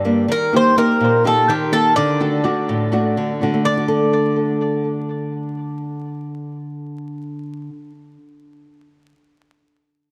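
A small, fingerpicked nylon-string guitar opens this intense, tense fragment of Greek folk in 7/8, joined at 0.3 seconds by an up-front, metallic bouzouki whose picked double strings, some doubled at the octave, carry the melody over chords moving from Eb to D, with tape echo on both instruments, light reverb and vinyl crackle giving the short, echo-heavy passage a worn, haunted air.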